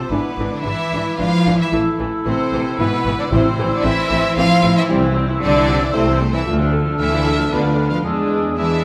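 Set in a straight triple metre, this spirited, graceful excerpt from a quick classical-period orchestral movement has a rich, expressive violin section carrying the melody over a second violin line, a dark, punchy cor anglais, a mellow distant flute section and a background clarinet, with a lush cello section and a distant double bass section on the bass, a smooth-topped viola section supplying accompaniment and a tight horn section holding sustained chords, a very quiet, dry timpani part from 3.3 to 4.1 seconds, and the whole ensemble placed in a moderate scoring-stage reverb as the harmony moves through A minor, C and D minor to a closing E7.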